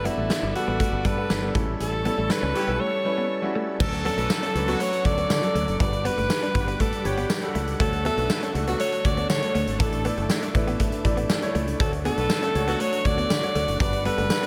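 A glossy mix with light reverb opens this uplifting 1980s-style pop passage in D major, moving at 120 BPM in a straight 4/4 and cut from a longer piece. Up front, a huge arena drum kit with a punchy kick, medium-tuned snare, bright cymbals, hi-hat, crash and tambourine booms through gated reverb, while an edgy, forceful alto saxophone carries the melody with vibrato. A brilliant grand piano fills in the accompaniment, and a growly fingered electric bass anchors the low end. Further back, a clean, compressed electric guitar recorded direct picks a riff through subtle chorus, and a lush vintage string machine holds sawtooth chords with a sub octave, slow attack and long release. A distant, roomy horn section adds stabs with tape echo, first at 2.5 seconds, in the middle of a band accent that runs from 1.8 to 3.8 seconds. The harmony moves from Gadd9 and A7 into a section built on Dmaj7, Gmaj7 and Asus4.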